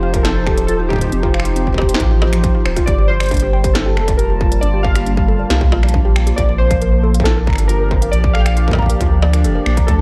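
A deep, round sub bass anchors this intricate, glitchy IDM excerpt in G minor, moving at 137 BPM in a straight 4/4. At 0.1 s a distorted electronic kick with studio reverb arrives together with an industrial drum kit of finger snaps, smooth hi-hats, a clanging snare and struck metal, both with a tape-warm edge. Warbly lo-fi synth keys carry a nostalgic, detuned melody colored by ring modulation, chorus and digital delay, while a dark, dusty pluck spins arpeggios through its own chorus and delay. Alongside them a hollow, flute-like pad holds soft sustained chords with chorus, the harmony shifting from F9 to Gm11 at 2.9 s. Light reverb and a dark, warm production give the piece a hazy, intimate feel.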